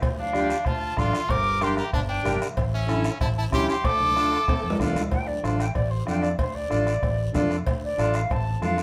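Cumbia with a danceable, driving feel, cut from a longer piece and played live by a band in one room with moderate reverb. A round, dark fretless electric bass and a soft-beater bombo anchor the groove, with ringing metal-shell cowbell and timbales, raspy close guiro and very quiet, distant congas, while a reedy accordion fills in the harmony. An airy, crisp-attacked silver concert flute carries the melody with a brilliant, punchy trumpet beside it until 4.8 s, and after a drum fill at 4.5 s the flute takes a solo from 5.1 s.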